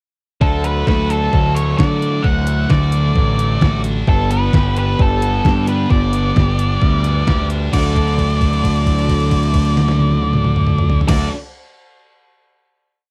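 Upbeat yet wistful, this short indie rock piece moves at 132 BPM in a straight 4/4 in D major, its tuning sitting slightly below standard pitch. A detuned 8-bit digital drum machine drives an indie four groove with a thumpy kick, a medium-tuned snare, hi-hat, toms and crash, its sampler-style kit pushed into overdrive, while a growling picked bass, bright and up front, stays locked to the kick drum. Three guitars fill out the arrangement: an overdriven electric guitar plays a dark, compressed riff with volume swells, subtle chorus and slapback echo, and a heavy high-gain guitar, set lower in the mix, adds bright picked arpeggios. On top, an octave-fuzz lead guitar carries a motif-based melody of hook phrases, its murky fuzz tone trailed by slapback echo. The verse moves from D to G, and at 7.7 seconds the band returns to D for a final held chord that rings until just past 11 seconds. The sound is dry and close, in the manner of a 1970s studio recording, with little room ambience.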